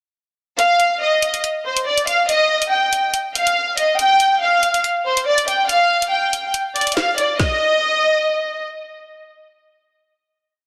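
A dense, heavily limited modern mix sits in a lush hall reverb, framing a dark, tense drill instrumental at 141 BPM with a half-time feel. A close, smooth violin section, bowed with vibrato and passed through a low-pass filter and delay, repeats a looping melody like a sampled phrase, while an up-front electronic drill kit of hard-clipped kick, woody snare and skipping hats with fast rolls drives the breakdown from 0.6 s. The drums stop at 7.5 s, leaving the violins to carry the final note until 8.6 s.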